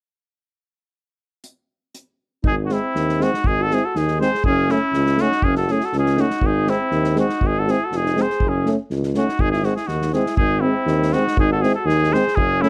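Bittersweet and restless, this short Balkan brass band fragment in G# phrygian dominant moves at 121 BPM in a lightly swung 2/4, as an acoustic drum kit with a punchy kick and bundle sticks opens alone at 1.4 seconds before a nasal, straight-muted cornet takes the melody up front over a mellow alto saxophone second line, a vintage-toned trombone and a softly vibrato euphonium in accompaniment, and a roomy tuba bass, all captured in a dry, close 1970s-style studio sound.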